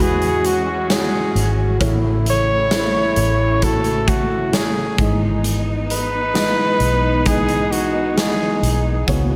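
A clear flugelhorn with light vibrato and scooped notes carries the melody of this emotional, hopeful pop ballad at 66 BPM in E major, joined by a mellow French horn section on a second line, both sent through slapback echo and digital delay, while a dark, felt-muted upright piano with audible action noise sits in the background, distant bowed strings hold lush chords with portamento, a round, foam-muted electric bass anchors the low end, and a huge arena drum kit with a punchy kick and medium-tuned snare plays over the Emaj7, A and Emaj7/G# changes inside a big hall reverb.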